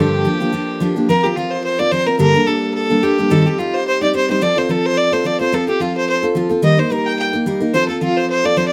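Wild, dark and lively, this Celtic folk excerpt from a longer piece races along at 216 BPM in 4/4 with a light swing, as an earthy, smooth-topped bowed fiddle carries the melody up front over a bright, full-bodied picked jumbo steel-string guitar, while a shimmering, very quiet hammered dulcimer rings out a second line until 3.1 seconds, all moving through minor-leaning chords from Gm7 to F, captured with close, detailed microphones and light reverb.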